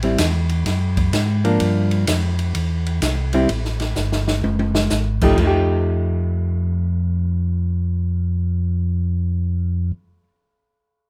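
Set in light reverb with every part up front, this soulful, greasy soul jazz organ trio excerpt swings in 4/4, cut from a longer piece. A round, mellow tonewheel organ carries the bass line with audible key click through a slow rotary speaker, while a clean, fingered hollow-body electric guitar comps with a dark tone over chords such as Am7, Gm7 and F9. An acoustic small-room drum kit with shadowy cymbals and a boomy kick plays a fill at 4.0 seconds and drops out at 5.5 seconds, leaving organ and guitar for the second section.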